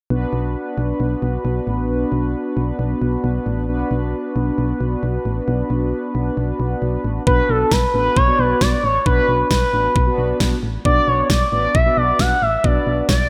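A mellow synth brass with a round, detuned sawtooth tone and chorus opens this cool, driving synth-pop excerpt in B minor at 134 BPM, sitting over a punchy, dark FM bass that holds the low end on a Bm chord. At 7.3 seconds a pop drum kit with a knocking kick and fat snare comes in alongside an expressive, nasal synth lead carrying the melody with vibrato and chorus. The bright 1980s-style digital production sets the parts up front within a lush hall reverb.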